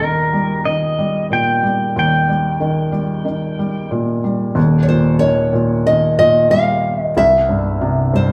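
A bright, twangy pedal steel guitar opens this heartbroken, reflective acoustic folk-pop ballad at 92 BPM, its slide and volume swells carrying a solo over a soft, felt-muted upright piano that plays a low accompaniment with audible action noise. The steel stops at 3.9 seconds, and at 4.8 seconds a full-bodied, fingerpicked nylon-string guitar takes the melody up front; at 7.2 seconds the harmony moves from Eb to C. The band plays live in one stone room, whose wet reverb surrounds the intimate sound.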